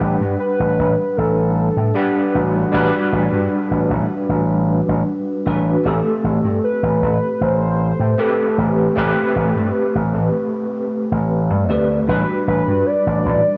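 A slap bass run through an envelope filter sits up front, punchy and amped, under an overdriven tine electric piano whose gritty, fast tremolo and ensemble chorus shimmer through a combo amp in this nostalgic, woozy vaporwave excerpt at 77 BPM in a straight 4/4. A velvety synth lead carries the melody from F#4 to D5, its wave-folded sawtooth and triangle tones smoothed by unison, chorus, vibrato and tape echo, while the harmony moves from Gmaj7/A to Am9 at 5.9 seconds and back to Gmaj7/A at 12.1 seconds. The whole sound is bathed in a moderate recital hall reverb and the worn, warbling pitch drift of old cassette tape, with a hint of small room ambience, and the bass drops out at 13.4 seconds just before the cut.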